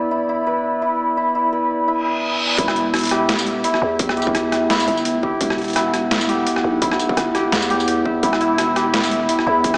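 Heavy and dark, this half-time drum and bass excerpt at 170 BPM in E minor opens with a mellow, shimmering santur playing arpeggios through a diffuse ambient delay and a filter sweep, over sustained chords from a deep, moody analog pad with chorus and sidechain pumping. A reverse cymbal and sub drop at 2.0 s lead into the drop at 2.6 s, where a growling, buzzy 808-style bass, a distorted electronic kick and a gritty, pitched-down sampler-style kit with overdrive, a high-tuned snare, hi-hat, rim click and tambourine enter with a swung feel. The whole mix is soaked in a lush hall reverb and has a small-speaker, dreamy character.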